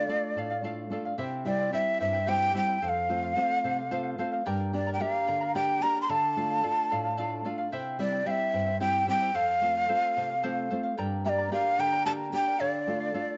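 A breathy large quena carries the melody up front, its end-blown wooden tone soft in attack, close and slightly unsteady, with a gentle vibrato that gives this Andean folk excerpt in a straight 6/8 a wistful yet festive air. Beneath it a fingerpicked charango shimmers on its doubled strings, some of them octave-doubled, while a thumb-plucked nylon-string guitar with fresh, classical-sounding strings adds a brief fill at 3.6 seconds over a minor-key cycle that returns to its opening chord near the end. A moderate echo-chamber reverb rounds out the sound, and the top end stays soft and mellow.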